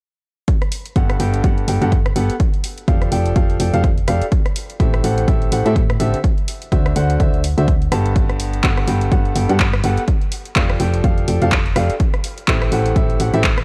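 A punchy, up-front electronic kick and a house kit of handclaps, hi-hat and rim click open at 0.5 seconds, joined at 1.0 seconds by a brilliant, woody upright piano riff and a round, mellow FM bass with tube saturation, both pumping with sidechain compression, in an uplifting, euphoric piano house excerpt at 125 BPM in G major with a 16th-note swing, cycling through Gmaj9, F69, Am7 and D9 with a dry, gritty cassette-tape character.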